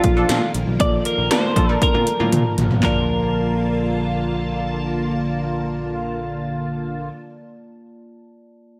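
A bright, twangy twelve-string electric guitar melody opens this romantic, glossy 1980s-style pop excerpt at 118 BPM in Bb major on a Bbmaj7 chord. It sits over a soft FM electric piano with chorus and phaser in the background, a lush vintage string machine with ensemble chorus, and a dark, overdriven picked bass. Punchy electronic pad drums up front, with gated reverb on snare and toms, play a fill from 1.8 seconds and stop at 3.0 seconds, while a funky, detuned sawtooth polysynth comp stabs in from 0.2 seconds, inside a light digital ambience.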